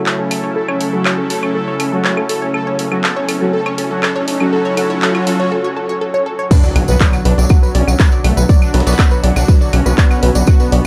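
A light reverb and digital ambience frame this hypnotic, melancholic melodic techno excerpt at 121 BPM in B minor. A bright, airy pad with chorus and sidechain pumping holds sustained chords over F#m7 through a build-up. Around it sit a lush, detuned unison pluck playing arpeggios with tape echo, bold, brassy analog synth brass stabs, and a smooth supersaw melody in the background carrying dub echo. A punchy analog drum machine, re-recorded in a small room, ticks along with claves, handclaps, hi-hat and crash, while a very quiet riser and impact enter at 1.3 seconds, and filter sweeps on the supersaw and polysynth drive toward a brief break. At 6.5 seconds the drop lands on Bm: an up-front layered kick, a jingly, close tambourine and a very quiet, pitched-up breakbeat kit with a high-tuned snare join. At 6.8 seconds a gritty, saturated, nasal synth bass enters on B1 with sidechain pumping.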